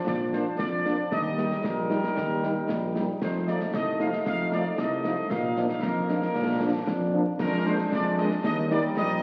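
A dark, tight trumpet section opens this spirited, proud military-style march for wind band in Bb major, carrying the melody at 115 BPM in a straight 2/4 over sustained chords from a warm trombone section. A mellow tuba with light vibrato holds down the bass, a smooth-topped French horn section adds background accompaniment from 0.3 seconds, and close, dry concert snare drum, bass drum and clash cymbals drive the pulse. The whole fragment sits in a wet scoring-stage reverb and carries the crackle of a very old 78 rpm record, cut from a longer piece.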